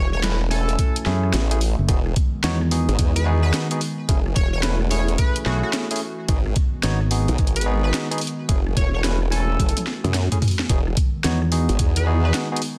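Glitch hop with a swaggering, funky strut, this short cut from a longer piece rides a 16th-note swing. Up front, a wobbling, detuned formant-sweep bass with chorus shares the low end with a thumpy, pitched-down, gritty electronic kick and a fingered electric bass, amped and tube-saturated, that plays from 1.1 to 7.3 seconds and returns briefly near the end. A layered electronic kit with a cracking snare, hi-hat, rim clicks and toms drives the groove, and a drum fill arrives at 9.6 seconds. Over this, an edgy, tearing sync lead with vibrato, chorus, tape color and digital delay carries the melody, while a barky, clean tine electric piano punches out stabs roughened by 12-bit sampler grit and sidechain pumping. Behind it all sits a dark, nostalgic, lo-fi pad that warbles through sustained chords, pumping and soaked in its own reverb, as the harmony moves among F#m7, Emaj7 and G#m7 in a dense, heavily limited mix with light reverb.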